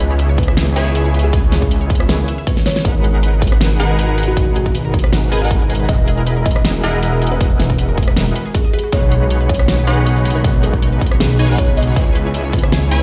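Swung, half-time future bass with a bittersweet, lush mood, built on a thick, chorused detuned saw bass and a punchy, tape-warm electronic kick up front, a pop drum kit with fat snare, metallic hats and rim clicks, pumping supersaw stabs, two very quiet unison plucks spinning arpeggios, one of them bright, an ethereal airy pad holding mellow chords, and a woody kalimba melody with tape echo sitting in the background, all inside a large studio reverb, with a drum fill at 2.6 seconds.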